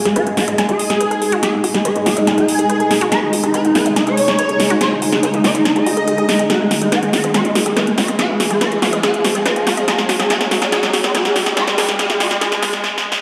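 A straight 4/4 pulse drives this alien psychedelic trance build-up, where a punchy, up-front electronic drum kit with metallic hats fills throughout under a sweeping filter, an aggressive, bright swarming rave lead with chorus, phaser and delay carries the melody, a nasal, tense swarming drone holds sustained chords in the background, a detuned sawtooth unison pluck repeats its riff through tape echo, a blurred granular cloud pad drifts very quietly, and an electronic riser climbs from 1.0 seconds, all in a large, reverberant room sound.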